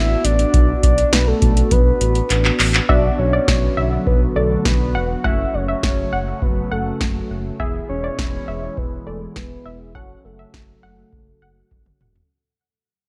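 A round, octave-layered synth lead carries a melancholic, nocturnal B dorian melody over a funky, ring-modulated polysynth comp and a gliding sawtooth bass in this 102 BPM synth-pop excerpt, joined at 0.2 s by an up-front analog drum machine with deep kick, punchy snare, metallic hats, claps and toms, before a drum fill leads at 2.9 s into a passage where a warbling lo-fi pluck and a swirling phased pad in the background enter amid a filter sweep as the music fades out through 12.3 s.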